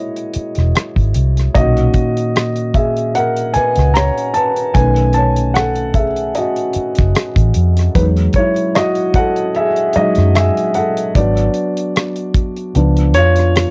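A dark, mellow baby grand piano takes the lead in this smooth, sultry neo-soul and R&B passage at 75 BPM with a gentle 16th-note swing, its intimate tone carrying audible action noise and long sustain through chords moving from F#7 to Bmaj9, Emaj9 and a closing C#7b9. A round, punchy, foam-muted electric bass and a damped 70s kit sit up front beside it; the drums are dry, with a tight kick, rolled-off top and cassette tape colour across hi-hat and rim click, and the kick drops out at 12.8 s. Light reverb and a home cassette recording give the piece a cozy, lo-fi character.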